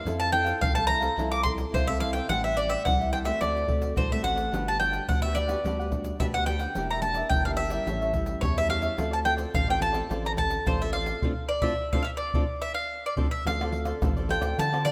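A rough home-demo recording bathed in a lush hall reverb carries this nostalgic, yearning samba-choro in D minor at 107 BPM, cut from a longer piece, where a bright, up-front bowl-back mandolin with double strings picks the melody over crisp cavaquinho and small, fingerpicked nylon-string guitar, a deep, thick, saturated sub bass and close, hard-handed egg shaker, tight surdo, pandeiro and tamborim, with a band accent from 11.2 to 13.5 seconds before a new section begins at 13.5 seconds.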